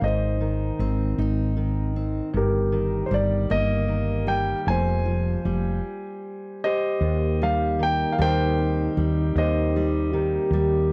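A dry, close studio recording with small-room ambience and a 1970s character frames this tender, intimate acoustic folk-pop ballad in 6/8, cut from a longer piece. A concert grand piano with audible action noise and long sustain carries the melody over a fingerpicked steel-string acoustic guitar with fresh strings and finger squeak, while a growly, round fretless electric bass sits up front beneath them. After a brief stop at 5.8 seconds, a dark, distant French horn with light vibrato enters at 7.0 seconds with a second line as a new section begins.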